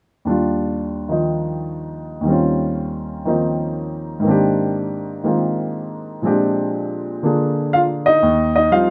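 Swung eighths in 4/4 carry this relaxed, sophisticated solo jazz fragment, where a warm, up-front baby grand piano plays alone from 0.2 to 8.9 s, moving through rich extended chords from Ebmaj9 and Eb13 to Abmaj9#11 and Bb13 before settling on Eb69, its natural tone set in light reverb.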